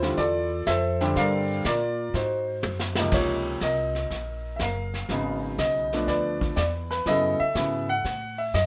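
A swung 4/4 pulse at 122 BPM drives this sophisticated jazz piano trio excerpt, with its eighth notes given a relaxed lilt and the tuning sitting slightly high at A4 = 445 Hz. The grand piano carries the melody up front, natural and mellow in tone, ranging from deep Db2 up to Gb5 over rich extended harmonies such as Dm9, Ab7 and Gbm11. Beneath it, a pizzicato upright bass with steel strings supplies a woody, thumpy low end. A vintage kit played with brushes fills out the trio from a small room, with dark cymbals, a medium-tuned snare, a punchy kick and a rolled-off top across brushed snare, hi-hat, crash and toms. A drum fill from 2.6 to 3.1 seconds ushers in a new section landing on Db6, and a moderate studio reverb gives the whole group a gentle sense of space before the fragment cuts off around 8.7 seconds.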